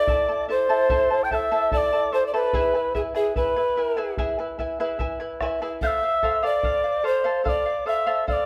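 A polished, airy wooden pan flute carries the expressive melody with tongued notes and vibrato, close and up front, while a reedy cane quena holds a higher straight-toned second line and a fingerpicked charango shimmers with its doubled, partly octave-paired strings. A deep, dark bombo enters just after, at 0.1 seconds, giving this festive yet melancholic Andean folk passage its low pulse as the harmony moves from A minor through E to F. The ensemble sits in a moderate recital-hall reverb, and the passage is cut from a longer piece.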